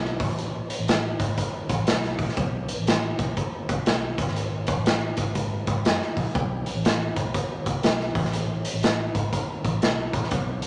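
A gritty, saturated drum kit with a bright, pumping stone-room sound sits up front in this uptempo 1960s-style soul excerpt at 121 BPM with a swung feel, its boomy kick, medium-tuned snare and hi-hat set under moderate club reverb, while a dark, round, foam-muted electric bass plays in the background throughout the 10.7 seconds for a warm, uplifting mood.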